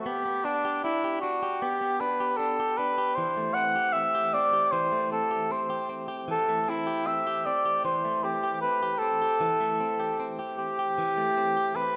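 A dark cor anglais and a clean electric guitar begin together, opening this short folk passage cut from a longer piece at an unhurried 77 BPM in a straight 4/4. The cor anglais carries the melody up front as the solo voice, played in a classical style with light vibrato and a smooth top that lends it a hopeful yet nostalgic tone. Beneath it, the direct-recorded guitar picks compressed arpeggios in a lower register, colored by a harmonic tremolo that gives its warm sound a gentle shimmer. The harmony rests on G before shifting to Am7 at 3.2 seconds, and both parts continue through to the close at 12.0 seconds. A moderate concert hall reverb surrounds the performance, giving it a spacious, reflective atmosphere.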